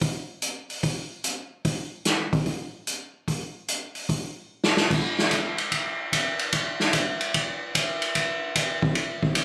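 A swinging big-band drum kit opens this joyful, energetic jazz clip, cut from a longer piece and moving at 148 BPM in 4/4 with a strong swing on the eighth notes. The acoustic kit plays throughout, drawing on crash and ride cymbals, hi-hat, snare and kick drum. Its dark cymbals, medium-tuned snare and boomy kick sit up front yet carry a roomy, distant character from the studio space. A short drum fill at 4.5 seconds bridges into a new section that begins at 4.9 seconds and runs to the end. The sound has the light reverb and compressed, ambient quality of a phone recording made in the room.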